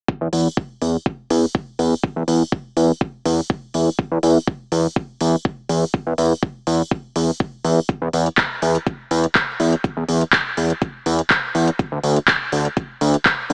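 Progressive house at 123 BPM in a straight 4/4, expansive and dreamy, this short cut from a longer piece runs as a single section from 0.1 to 13.5 seconds. An up-front, layered electronic kick with a deep thump anchors the groove, joined by a fat analog bass of detuned sawtooth and triangle tones, wave-folded and filter-swept, that holds sustained notes between D2 and E2 with a fast attack and sidechain pumping. A deep house kit adds handclaps and smooth hi-hats that pump with the sidechain, all set in light reverb with an AM-radio colour.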